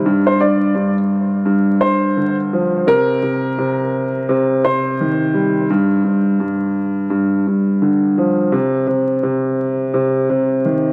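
Vinyl crackle and a moderate plate reverb with a long tail frame this moody, tough hip hop fragment, cut from a longer piece. It moves at 85 BPM in 4/4 with a 61% swing on the sixteenths, in G minor and tuned slightly sharp to A4 = 444 Hz. A dark baby grand piano carries the accompaniment in its low register for the whole 10.9 seconds, sitting up front with a mellow, smooth, long-sustaining tone colored by cassette tape and narrowed by high- and low-pass filtering. Above it, a dark upright piano plays the melody between 0.3 and 5.7 seconds, quieter in the mix but still close, with a woody, vintage character, its own filtering and an analog delay. The harmony moves from G5 to Cm7 and back to G5 before dropping out of chords entirely for the final stretch.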